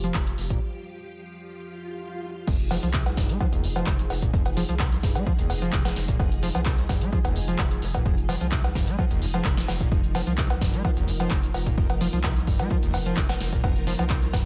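Digital ambience surrounds this gritty, driving acid house passage at 129 BPM in F minor, where a squelchy, resonant overdriven acid bass riff with tube saturation, analog chorus and tape echo sits in the background alongside lush, vintage string-machine chords and a deep sine sub bass, all three pumped by sidechain, while an overdriven electronic kick enters at 0.1 s, a punchy analog drum machine supplies cowbell, crash, handclaps, hi-hat and snare, a very quiet acoustic brush kit adds hi-hat and snare, and a brief electronic swell at 1.7 s closes a break before the drop lands on Fm7 at 2.5 s.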